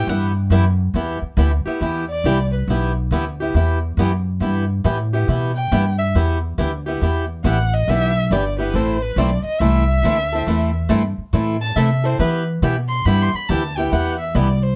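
A bowed violin carries the solo line with vibrato, portamento and a soft attack, sounding close and expressive in the B4 to C6 range; it makes a brief appearance at 2.1 seconds before returning at 5.6 seconds. This is a virtuosic, swinging excerpt of acoustic string swing in the jazz manouche style at 139 BPM in E minor, moving from Em to Am at 8.7 seconds. Up front, a bright, boxy picked acoustic guitar plays the accompaniment alongside a thumpy, woody pizzicato upright bass with gut strings, all set in a dark, warm production with light reverb.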